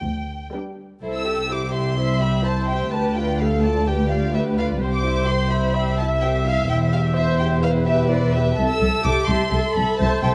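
A smooth-topped violin section carries the melody high above the staff in this spirited, cheerful classical-period movement for string orchestra, its soft-attacked, sul tasto tone touched with light vibrato. Cellos and double basses anchor it from the start, the cellos woody and the basses dark, while a darker second violin line and a warm, vibrato-rich viola accompaniment join at 0.5 s over a progression moving from G to C, G7/D, C/E and Am/C. Close, detailed microphones and light reverb give this cut from a longer piece an intimate, chamber-like presence.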